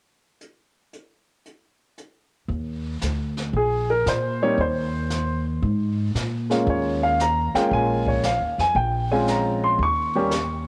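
An upright piano carries the melody, its woody, naturally ringing tone sitting up front with long sustain once it enters at 3.6 seconds. This is a swung jazz piano trio in 4/4, cut from a longer piece, with a sophisticated, warm mood. A brushed drum kit starts things at 0.4 seconds, heard distant and roomy with a medium-tuned snare, punchy kick, hi-hat and a rolled-off top. A plucked upright bass with steel strings follows at 2.5 seconds, close and full in the low register, sounding woody and warm. The harmony drifts through an Abadd9 over Eb and an Eb7sus4 before settling on Bbm7 and Eb7. The whole trio sits in a moderate spring reverb, captured as a home recording on cassette.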